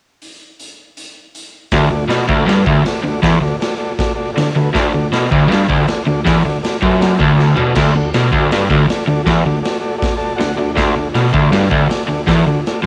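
Rowdy and swaggering, this garage rock cut from a longer piece charges along at 159 BPM in a straight 4/4, centered on D major. A raw acoustic drum kit opens alone at 0.2 s, its punchy kick, medium-tuned snare, hi-hat, toms and crash cymbal sounding gritty and saturated in a bright stone room that pumps around them. At 1.7 s a crunchy, overdriven electric guitar drops in with a low picked riff on a D chord, double-tracked and up front, while a vintage combo organ holds mellow, clean sustained chords drenched in heavy vibrato. A drum fill breaks through at 7.4 s, and the organ adds a fill of its own around 10.0 s. The home cassette recording carries a light reverb that suits the scrappy energy.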